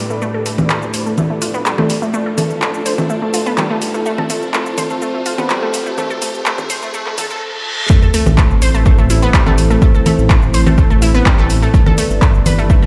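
Dark and dramatic, this excerpt from a longer melodic techno piece moves in a straight 4/4, opening with a build-up in which filter sweeps move across a bright, wave-folded unison pluck arpeggio and a deep, moody analog pad holding sustained chords over Dm and F. Beneath them, a detuned saw bass rumbles in the background with a beating, saturated edge, while a warbling, vintage analog drone sits on a single low note until 7.4 s and an ethereal, airy pad with ensemble chorus floats high above. An overdriven deep house drum kit of congas, handclaps, hi-hat and shaker sits up front throughout, and a riser and reverse cymbal sweep in the background to lift the tension. At 7.9 s the drop arrives with an impact and a punchy, layered electronic kick, the harmony turning to Am and then G as the synth parts pump against the beat. The pluck carries digital delay and a cassette-tape colour, and the mix sounds as if played on a big sound system in a bare room, bathed in a large studio reverb.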